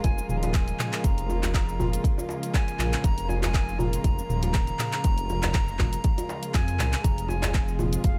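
Spiritual and hypnotic, this short afro house cut from a longer piece rides a gently swung groove. A breathy silver concert flute carries the melody in a close-miked, straight-toned voice with tongued, expressive phrasing and a digital delay trailing behind it. Beneath it, a dark chamber string section holds sul tasto chords with light vibrato and a soft attack, pumping against the beat much like the deep, rumbling detuned saw bass, whose beating sawtooth tone has a fast attack and long sustain. An up-front, layered electronic kick with a tape-warm weight anchors the groove, while a produced afro-pop kit adds cabasa, handclaps, toms and warm hi-hats, and a medium-tuned, vintage-sounding djembe with metal rattles sits throughout. The harmony moves from Bbm7 to Fm at 7.0 seconds, and a bright, saturated burst of congas flickers in the background at 7.8 seconds, all set in a studio reverb.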